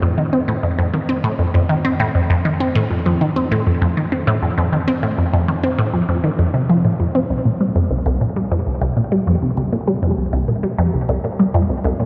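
A resonant blip pluck carries this ambient piece alone from 0.0 to 12.0 seconds, its juicy, squelchy tone built from detuned pulse and sawtooth waves under a filter pluck with a moving notch. Each note has a fast attack and short decay, and the part sits up front, spanning C2 to C4. A phaser and an analog delay colour the pluck, while a long cathedral reverb with a 6.2-second decay sets it in a vast, echoing space. The mood is expansive and mysterious, moving in a straight 4/4 feel with the tuning set to A4 = 438 Hz. This recording is cut from a longer piece.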